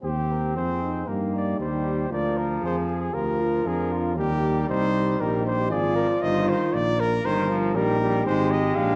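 From the first beat, a stately, triumphant classical brass quintet in Eb major at 117 BPM sets a dark-toned trumpet with light vibrato up front on the melody over a close-miked tuba bass, while a mellow flugelhorn second line, a warm French horn with vibrato and a bright, distant trombone sit in the background of a reverberant recital hall.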